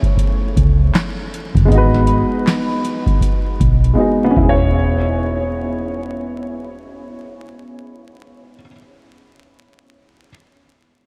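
A dreamy, reverb-soaked mix with vinyl crackle and a huge ambient tail opens this cosy lo-fi hip hop excerpt in E major, moving at 79 BPM in 4/4 with a 16th-note swing. An upright piano carries the accompaniment, its worn, woody tone sitting up front with audible action noise, a slightly detuned, boxy character and short sustain, further softened by cassette tape colour and a low-pass filter. A booming analog drum machine supplies dry, up-front beats of deep kick, crisp snare, metallic hi-hats and handclaps, but it drops out at 4.0 seconds. A muted, fingered electric bass joins at 0.6 seconds with a dark, round, amped tone. The harmony drifts from Amaj7 to G#m7 and settles on E6, leaving piano and bass to float in the reverb after the beat falls away.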